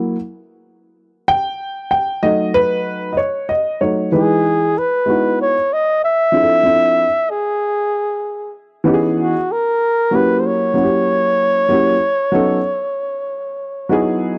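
A gentle 16th-note swing sits under this 95 BPM hip hop groove in 4/4, cool and smooth in E major. A dark upright piano opens alone, its woody, slightly worn tone close and intimate, with the soft clatter of its action audible and a faintly detuned edge. At 4.1 seconds a breathy flugelhorn enters with the melody, its whispered, soft-edged attack and gentle vibrato giving a jazz-style solo voice. The harmony moves through rich extended chords, settling on Emaj7 and Emaj9 before drifting to Dm9, C#m9 and a tense F#7b9 that leans toward B7/F#. Both instruments sit up front in a dry, close studio sound with a 1970s character, and the clip is cut from a longer piece, ending around 14.4 seconds.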